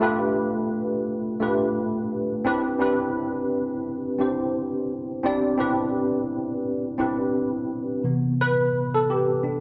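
Soul at 86 BPM in C major, with a gentle 16th-note swing, this short excerpt cut from a longer piece has a romantic, tender mood. A single tine electric piano carries everything, ranging from C3 to D5 and sitting up front through a combo amp, its worn, slightly out-of-tune tone softened by an ensemble chorus. The harmony opens on G7 and settles onto Cmaj9 at 2.5 seconds, then shifts to Cmaj7 when a new section begins at 8.0 seconds. The production is dark and cozy, with a moderate echo chamber reverb lending a digital ambience that lingers behind the keys. The tuning sits slightly below standard pitch, adding to the instrument's aged, intimate character.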